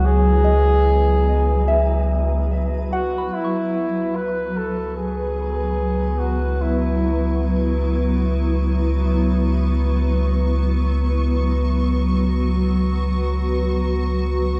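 Set in a dark, roomy space with a long scoring-stage reverb, this ambient excerpt drifts in free time in C# minor, reflective and melancholic. A distant, classical-style flugelhorn carries a solo melody up front through a diffuse ambient delay until 7.8 seconds. A cloudy, blurred granular pad holds evolving sustained chords with a slow attack and its own reverb, while a deep, round sine sub bass sits firmly on C#2 beneath it. A soft, pure FM bell with chorus and delay traces gentle arpeggios up high and stops by 4.2 seconds. From 3.3 seconds a muted, veiled violin section bowed con sordino fades in on a high C#6, adding a faint vibrato shimmer over the C#m7 harmony.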